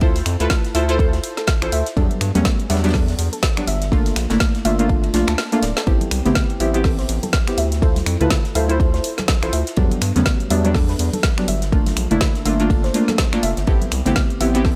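A deep, up-front electronic kick anchors this smooth, deep house excerpt at 123 BPM with a swung 16th feel, dropping out briefly at 5.4 seconds for a drum fill. Full-bodied, detuned chord stabs with chorus and tape echo and a round, sustained analog bass pump together through a Dm9, Em9, Gm9, Am9 cycle, while a warbling, lo-fi pluck plays arpeggios in the background. A layered deep house kit adds finger snaps, a woody snare and dark hats; a very quiet, airy fusion kit contributes ride and hi-hat; and bright congas enter at 6.0 seconds, all within a dry, gritty hardware sound.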